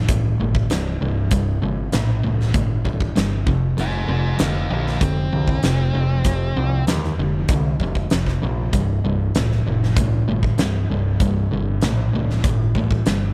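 A straight 4/4 groove drives this brooding, gritty slice of classic rock, cut from a longer piece, with a huge arena drum kit up front pounding out a punchy kick, a fat snare and hi-hat in a pumping, hall-like room. Two picked guitars sit in the background playing a low riff: an overdriven semi-hollow guitar with a hollow-body tone and a sludgy distorted guitar, both with a warm, overdriven edge. Underneath, a growling picked electric bass, direct and amped with overdrive, holds down the bottom end. From 3.8 to 6.8 seconds a dark octave-fuzz lead guitar adds a short second line higher up, sitting low in the mix. The riff rests on C5 power chords, moving to F5 at 3.5 seconds and back to C5 at 8.7 seconds, all under a light reverb.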